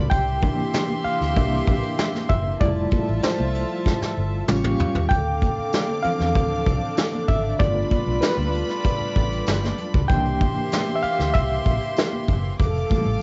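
Bittersweet and silky, this short excerpt of lush 1970s-style soul at 96 BPM features a barky, lightly overdriven reed electric piano with fast tremolo taking the solo over C7, Fmaj7, A7b13, Dm7 and G9 changes, supported by a gut-toned chamber string section with light vibrato, a shimmering sawtooth string machine in the background, a dark, foam-muted fingered bass with tube saturation, an up-front brushed drum kit with a punchy kick and a fill at 3.9 seconds, plus very quiet high-tuned congas and jingly tambourine, all in light reverb with the muffled top of a home cassette recording.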